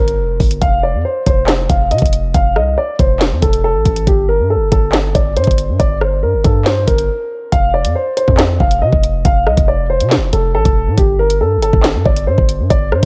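A menacing, ominous drill track at 139 BPM with a half-time feel, this excerpt sets a dark, mellow concert grand piano melody over a hard-hitting 808-style bass that is punchy and heavy, with a fast attack and a decaying tail. An electronic drill kit enters at 0.1 seconds with a knocking kick, sharp snare, bright hi-hats, handclaps and rim clicks, all sitting up front alongside the boxy piano in a digital ambience. Harmony moves around G minor and F, and a brief break at 7.1 seconds leads into a second section at 7.5 seconds.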